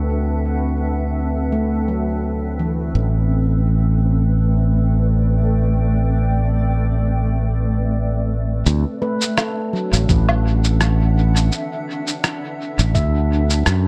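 An echo-heavy, dry-roomed mix gives this short ambient dub fragment a spacious, hazy feel at 84 BPM in 4/4, with a gentle 16th-note swing. A mellow granular cloud pad holds blurred, slowly evolving chords from D13 to Am11 and back, its slow attack and long release softened by its own built-in reverb. Over it, a dark, ringing handpan plays meditative arpeggios with sharp finger strokes, carried by dub echo and shaped by a filter sweep through the opening stretch. Up front, a bright, punchy fingered electric bass with tube saturation anchors the low end. At 8.7 seconds, a compressed, pitched-down percussion set of cabasa, rim click and woodblock arrives with a muffled, tape-warm, sampler-style character, dub echo and small room ambience. A thumpy electronic kick sits in the background from 10.1 to 13.1 seconds.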